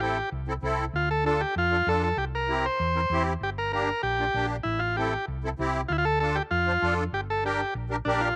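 A straight 4/4 cumbia pulse at 194 BPM drives this fiery, passionate fragment in G dorian, where a buzzy vintage combo organ carries the melody over a reedy, shimmering musette accordion with slapback echo and a round, dark hollow-body electric bass, all three up front and dry in an open-air sound as chords move from Am7 through Dm, C and Gm across 8.4 seconds.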